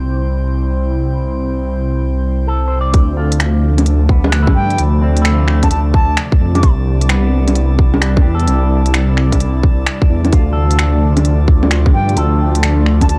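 This melancholic, ghostly future garage fragment in D minor opens with an airy pad sitting softly in the background, its chords grainy with sampler grit and cassette wear and pumping against the sidechain. Beneath it, a deep, detuned saw bass rumbles up front with a beating, dark tone, while a glassy texture of drifting overtones hovers calmly above in its own reverb. A clean, twangy electric guitar through an envelope filter arrives at 2.5 seconds, its bright, scooped picking trailed by analog delay. At 2.9 seconds the beat enters at 130 BPM in 4/4 with a heavy 16th-note swing: a tight, tape-toned kick stands forward, joined by a crisp kit of bongos, finger snaps and hi-hat. A breathy concert flute steps in for short phrases from 4.6 seconds, close-miked and expressive with a straight, tongued tone and analog delay. The harmony alternates between C and Dm7, and the dry, homespun cassette sound keeps the whole passage intimate and hazy.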